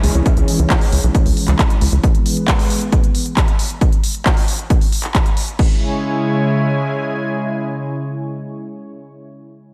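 Euphoric and driving, this short cut from a longer uplifting trance piece runs at 135 BPM in straight 4/4, in C# minor, moving from C#m to E and back to C#m. A lush, thick unison pad of detuned sawtooth and square waves holds sustained chords throughout, its slow attack and long release coloured by chorus and sidechain pumping, while a filter sweep shapes it early on. A tight, dark sequencer bass with a fast-attack filter pluck sits up front and pumps through the opening bars until 2.0 s, joined at the start by a very quiet downlifter. A punchy, tape-warm electronic kick enters at 0.3 s beside a layered techno kit of crash cymbal, handclaps and smooth hats, whose hats, percussion and cymbals pump with the sidechain, both re-recorded in a small room. When the drums drop out at 5.7 s, the pad carries on alone in a dreamy mix soaked in a lush hall reverb.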